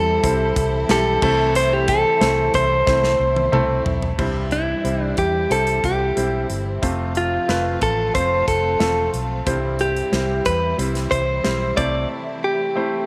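A clean, up-front electric guitar with spring reverb carries a hopeful melody from the opening moment over bright, brilliant grand piano accompaniment, a lush bowed string section in the background and a dark, round muted bass, while a polished acoustic drum kit with a punchy kick plays a fill from 2.9 to 4.2 seconds and falls silent just before a short break at 12.1 seconds in this piano-driven pop excerpt.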